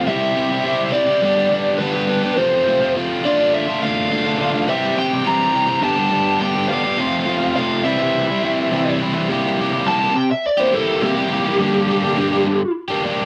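Rock at 104 BPM in a straight 4/4, moody and restless, where an up-front, double-tracked overdriven electric guitar picks a warm riff beneath a dark, picked lead guitar through a small cranked amp with slapback echo carrying the melody over chords moving from C through G, F and Dm, before the lead breaks into a solo at 9.3 seconds over C7 and Gm, all captured in a dry, close 1970s-style studio sound with light reverb in this fragment of a longer piece.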